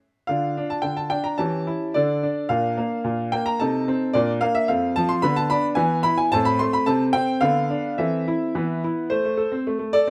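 In a straight 2/4 at 109 BPM, this serious, dramatic classical-period sonatina excerpt features a solo baby grand piano, brilliant and up front with long sustain in light reverb, moving from D minor toward A minor at 4.7 seconds through chords such as Bb, E and Bm7b5/D before settling on Am at 9.1 seconds.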